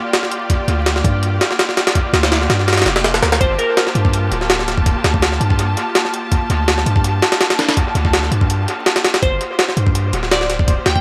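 A pitched-up, sampler-style jungle drum kit sits up front from 0.1 s, its thumpy kick and high-tuned snare compressed and gritty, with a small room ambience and dub echo trailing the hits. This is a frenetic yet atmospheric drum and bass passage at 165 BPM in G minor, swung slightly at 53% on the sixteenths and cut from a longer piece. Beneath it, a rich, bowed studio string section holds a sustained Gm9 chord from Bb3 to A5, smooth and lightly vibrato-touched, colored by vintage 12-bit sampler crunch. A deep, mellow 808-style sine bass enters at 0.7 s, its long notes reaching down between D1 and G2. A crystalline wavetable pluck flickers in briefly around 3.4 s and returns near 9.2 s, bright and detuned with chorus and dub echo. Spring reverb, heavy echo and a bed of vinyl crackle give the mix a hazy, dubby depth.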